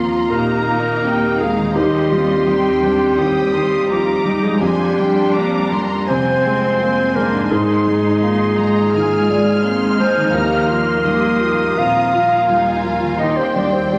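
Cinematic orchestral film scoring with an emotional, hopeful and uplifting character, moving at an unhurried pace with a rubato feel. A dark, up-front solo clarinet carries a second line beneath two studio violin sections, one warm and lush with vibrato carrying the high melody, the other clear and smooth adding its own counterline. Beneath them, a felt-muted upright piano gives intimate, mellow accompaniment with audible action noise, joined by an expressive viola section with portamento in the background. Dark French horns hold sustained chords, a concert harp rings out thumb-plucked arpeggios, and rich cello and double bass sections anchor the low end. The harmony drifts from Ebsus2 through Cm/Eb, Fmadd9 and Ab before returning, all set in a generous scoring stage reverb, in a 14-second passage cut from a longer piece.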